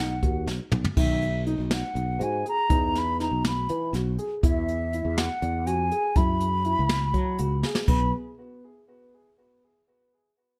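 Set in a 7/8 at 243 BPM counted in eighths, with a straight feel, this bright, intricate progressive instrumental in B major is a short cut from a longer piece. A hollow wooden flute carries the melody up front, its pure, tongued tone shaded with vibrato and heard close-miked. Beneath it, a growly fretless electric bass sustains with a lush chorus, while a dark, boxy grand piano spins arpeggios through a delay. A jazz kit played with brushes enters at 0.2 seconds, its boomy kick, medium-tuned snare, toms, hi-hat and dusky cymbals sitting in a studio room, with fills at 0.5 and 7.6 seconds. The harmony moves from B through Emaj7(no3), Eadd9 and F#7sus4 before giving way to a chordless passage at 7.9 seconds, all bathed in light reverb.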